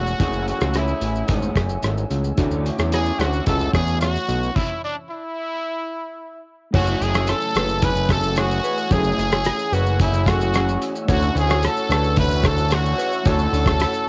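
Hazy and lonely, this excerpt of indie bedroom pop moves at 110 BPM in a straight 4/4, sitting in F# minor over F#m9 and Dmaj9 chords. A raspy, growling trumpet carries the melody up front, brilliant and punchy with a light vibrato, colored by analog chorus and cassette tape grit. Beneath it, a fat, thick bass built from detuned sawtooth and triangle tones with ring modulation and a filter sweep pushes forward alongside a loose, muffled indie drum kit of tight kick, rim click, hi-hat, shaker and crash, its top end rolled off. Further back, a dark, slightly broken-up electric guitar through a small old amp wobbles with pitch drift, while a very quiet mellow tine electric piano adds accompaniment and a smooth, softly swelling analog pad holds sustained chords. A stop arrives from 4.6 to 6.7 seconds, and from 6.7 seconds a clean, fingered second electric guitar adds a subdued line in the background. 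Light reverb and the saturated sound of a home cassette recording tie it all into a dusty, intimate haze.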